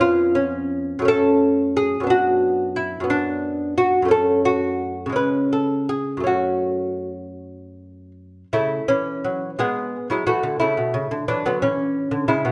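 A solo lute, fingerpicked on delicate, doubled gut strings placed up front in a moderate recital-hall reverb, plays a flowing, radiant baroque-style dance in a rubato 6/8 that brightens from minor into a major-key passage at 8.5 s before this fragment of a longer piece breaks off at 12.5 s.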